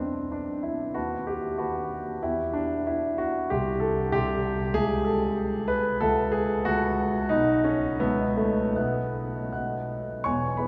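Warm and lyrical, this short excerpt from a romantic classical character piece in E minor has a single dark, mellow grand piano playing up front in a flexible rubato 2/4 at 77-97 BPM, spanning deep bass to bright upper notes and bathed in a long, wet cathedral reverb as its harmony moves through shadowed turns to a suspended B chord that settles onto B.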